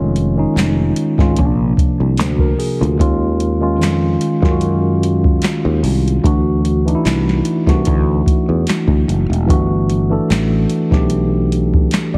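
R&B with a neo-soul lean, this short cut from a longer piece feels sultry and smooth, moving at an unhurried pace with a gentle swing on the sixteenths. A mellow tine electric piano carries the accompaniment with a clean, warm tone that sounds as if it's coming through its own built-in speakers, voicing lush chords that drift from Dbadd9/F through Ebm11 to a D9 around 6.2 seconds and settle on G6. Beneath it, a sustaining fretless electric bass sits up front with a bright, growly, direct character. A soft vintage rhythm box enters at 0.2 seconds, pairing a deep kick and crisp snare with metallic hi-hats and handclaps, the snare, claps and hats set in a short room. The whole mix carries light reverb and digital ambience, squeezed into a heavily compressed, radio-like sound that keeps all three parts close and intimate.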